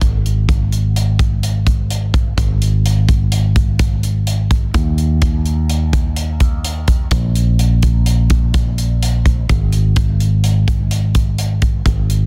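A fretless electric bass and a modern studio drum kit start together at once in this short, driving cut from a longer progressive instrumental piece. The tempo sits at 127 BPM in an uneven 5/4 meter with a straight feel, giving the music a bright push. The fretless bass carries the low end between Ab1 and Eb2, its electric tone warm, direct and amped, and placed up front. The drums use hi-hat and a punchy kick, with an acoustic, mid-forward character from a studio room, also placed close in the mix. The sound is dry with little reverb, and the master is dense and heavily limited in a modern style, running as one continuous section to about 12.3 seconds.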